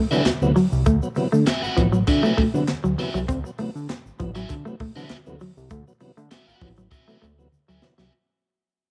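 A hazy, lo-fi home cassette sound with light studio reverb and a thin layer of vinyl crackle frames this gritty, playful funk excerpt, cut from a longer piece and fading out across its full 8.1 seconds. At 99 BPM in a straight 4/4 groove in D mixolydian, it rests on a D13 chord. A bright, clean semi-hollow electric guitar sits up front with the main riff, its picked tone thickened by lush chorus and tape coloring, while a fat analog bass with a detuned sawtooth-and-square edge, filter sweep and moving notch holds down the low end. A biting overdriven guitar adds picked accompaniment higher up, and a tonewheel organ punctuates with stabs full of key click, fast rotary speaker churn and tube saturation. A grainy tube shaker, present from 0.1 seconds, stays tucked in the background, and at 0.3 seconds a crisp fusion drum kit enters with a punchy kick, medium-tuned snare, hi-hat and handclaps in an airy, polished room sound, together with low-tuned, thick-skinned congas. 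A drum fill at 6.9 seconds closes the passage.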